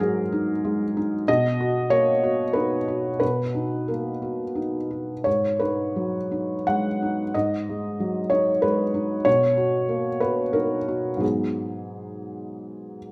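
Wistful and reflective, this brief excerpt of neoclassical minimalist piano features a solo felt-muted upright, soft and intimate with audible action noise and sitting up front, drifting in rubato 3/4 through Bmaj7 and G#m7 harmonies inside a moderate recital-hall reverb.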